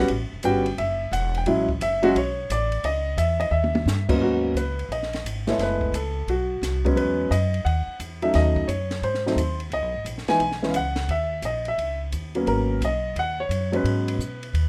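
Lightly reverberant, this swinging, cool jazz piano trio fragment puts a present grand piano with long sustain and a woody pizzicato upright bass up front, while a dark, smooth cocktail drum kit with a high-tuned snare and punchy kick sits further back and drops in a short fill at 3.5 seconds before the harmony settles into richer minor chords.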